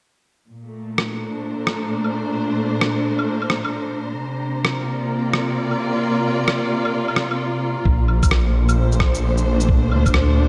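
A bowed studio string section opens at 0.5 s with expressive sustained chords, full of vibrato and portamento, pumping against a sidechain, while a dark, breathy, wind-like noise layer with chorus drifts in the background and muffled, pitched-down rim clicks, claves and shaker tick along in a swung future garage groove. At 7.9 s a menacing, saturated detuned saw bass with a filter swell arrives up front alongside a thumpy, compressed kick drum. The whole piece sits in a dreamy, reverb-soaked hall, giving it a rainy, melancholic mood; it is cut from a longer track.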